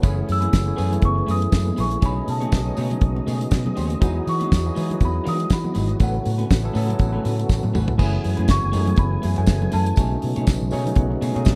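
Driving and glamorous, this short disco cut rides a dry, fat-snared 70s drum kit and a round, up-front fingered bass, while a barky tine electric piano, a slightly broken-up guitar with spring reverb and a lightly overdriven tonewheel organ on slow rotary sit beneath a delicate, slightly out-of-tune celesta melody from 0.3 seconds, with jingly tambourine and very quiet high-tuned congas adding sparkle, a drum fill at 7.5 seconds and an electric piano fill at 10.5 seconds in a dark, warm production.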